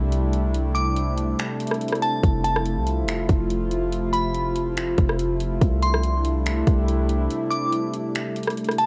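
A nostalgic, warbling lo-fi pad on sustained C69 and Fmaj7 chords opens this blissful, floating fragment of half-time cloud-rap with a deep, boomy 808-style bass, soon joined by an up-front electronic trap kit of finger snaps, metallic hats, rim clicks and a hard-clipped kick that drops out from 1.4 to 2.2 seconds, while a crystalline FM bell melody with chorus, phaser and analog delay rings high above until the bass stops at 7.3 seconds for a closing break.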